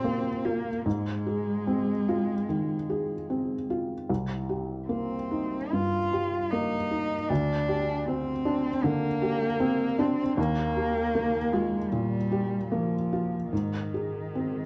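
Heard through worn, warbling cassette tape with warbly pitch drift and a moderate large-studio reverb, this fragile, reflective neoclassical excerpt pairs an intimate felt-muted upright piano, mellow and up front with audible action noise and short sustain, with a single dark, woody bowed cello playing sul tasto with vibrato as a second line, both moving in unhurried rubato over chords such as Ebadd9, Ab6, Cm7 and Gsus4/D.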